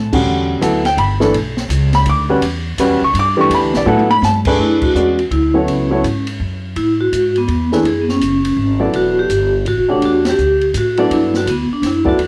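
A swung 3/4 pulse at 166 BPM drives this cool, intense modal jazz excerpt in F# phrygian, with the pizzicato upright bass sounding woody and the open drum kit bringing dark cymbals, a high-tuned snare and a boomy kick in a small room. The up-front baby grand piano comps with short sustain and cassette tape color over Em11 and F#m11 harmony, and a drum fill at 3.9 seconds leads into the entrance of the vibraphone melody at 4.6 seconds. Played with medium mallets, the vibraphone rings metallic and vintage with a fast motor vibrato and band-limited tape tone, while the band hits accents such as the one at 10.2 seconds in a homespun cassette recording.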